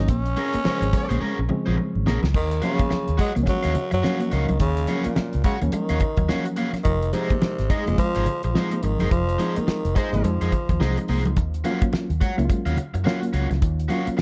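A dark production with light reverb frames this sly, funky excerpt, anchored by a round, punchy, foam-muted bass and a dry 70s drum kit with a fat snare and tight kick, while very quiet, close-miked congas sit low beneath. A growling, breathy tenor saxophone carries the raspy, scooped melody until 11.1 seconds, over a reedy, worn electric piano playing stabs with fast tremolo and analog delay, a mellow, clean guitar riff in the background and a crunchy overdriven guitar adding bright accompaniment. A smooth horn section adds a brief second line at 0.7 and 10.0 seconds, and the band hits accents together as the chords move through Bbm7, Ebm9 and Fm7.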